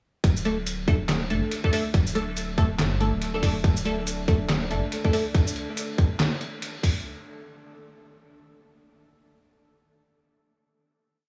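This short, complete piece of deep dubstep opens at 0.2 seconds straight into a dark, cavernous drop at 141 BPM, its swung sixteenths set against a heavy half-time feel and sitting on a D5 chord. A tight, tape-warm electronic kick drives the half-time beat up front, while a muffled, pitched-down sampler-style kit adds an overdriven snare, claps, open and closed hi-hats, shaker and crash. A soft, round sub bass carries a dub-style line with fast attack and sustained notes, and stops at 4.8 seconds. Muted, detuned chord stabs pluck short off-beat shapes moved in parallel, colored by phaser, ensemble chorus and dub echo. Later, a moody ambient pad with a slow attack and long release enters at 4.0 seconds as a quiet drone bathed in chorus and reverb, all captured with a dry, gritty hardware character in a small room.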